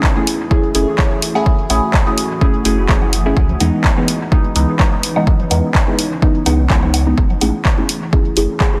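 Dub techno in F# dorian at 126 BPM, this hazy, cavernous fragment of a longer piece sways with a light 16th-note swing over chords moving from F#m9 to C#m9 at 3.4 seconds and back at 7.2 seconds. A punchy, layered electronic kick sits up front, joined by a deep house kit of handclaps and dark hats that trail off into dub echo. A mellow chord stab, also up front, blends triangle, sawtooth and sine tones with ring modulation and a moving notch, its decaying hits colored by chorus, phaser, dub echo and sidechain pumping. Behind it, a deep, moody ambient pad of detuned sawtooth unison with a sub octave swells in slowly and lingers, soaked in chorus and built-in reverb. A round sine sub bass enters at 0.7 seconds and breathes with the pumping, while woodblock and congas, recorded in a large room, drift in the background with their own echo from 1.4 seconds. The mix carries light reverb under a dense, heavily limited modern master.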